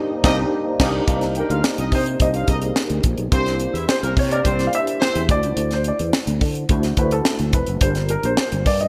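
Polished 1980s jazz-funk pop at 107 BPM with a slick, urban mood, opening on a band accent before a dark, mellow baby grand piano takes a solo from 1.1 seconds over a worn, slightly out-of-tune tine electric piano with ensemble chorus, a growly fretless bass with lush chorus, a tight funk kit with a high-tuned snare and gated reverb sitting up front, and a punchy, distant horn section in octaves that plays until 5.2 seconds, all moving through Cm9, C7, D7 and Gm7 in a bright digital production with plate reverb, in an excerpt cut from a longer piece.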